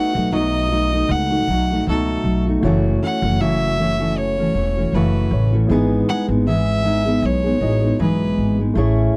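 A fingerpicked steel-string acoustic guitar, full-bodied and up front, opens this short acoustic pop excerpt at once alongside a clear, bowed violin carrying the melody and a reedy electric piano with a fast tremolo sitting in the background. Just after, at 0.1 seconds, a pizzicato upright bass on gut strings joins with a woody, thumpy low end. The mood is heartfelt and easy-going, moving at 78 BPM in 4/4 with a light sixteenth-note swing, in E major. The violin, a single player, stands out with its biting, nasal intensity, vibrato and smooth top, while the chords pass from B7 to F#m7 to Emaj7/G#. The sound is dry and close, like a 1970s studio recording with little reverb, and the fragment ends around 9.2 seconds.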